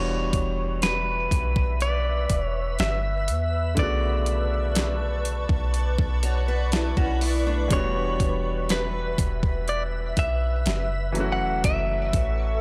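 A bright, compressed clean electric guitar carries the melody through spring reverb and tape echo in this late-night, longing contemporary R&B excerpt, set over a boomy, deep 808-style bass and a thumpy, overdriven 8-bit drum machine of kick, snare and hi-hat that sits up front. A clear grand piano supplies accompaniment while a blurred, warbling granular pad drifts in at 1.0 seconds with sustained chords over an Em7 to Bm9 to Em7 to F#m7 progression. Between 6.2 and 7.9 seconds a boxy parlour acoustic guitar adds picked arpeggios with audible finger squeak, all captured in a dry, gritty recording.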